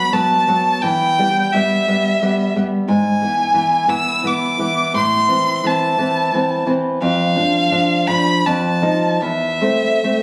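Captured on a phone in the room, this short cut from a longer piece sits in a moderate recital-hall reverb of about 1.5 seconds. It is a melancholic, yearning romantic duo in A minor and 3/4, moving with a rubato feel between 73 and 90 BPM. A rich, smooth bowed violin carries the melody up front with even vibrato high in its range, while a dark, fingerpicked nylon-string classical guitar supplies the accompaniment through harmonies moving from E minor toward A minor, D minor and F7 before settling on A minor.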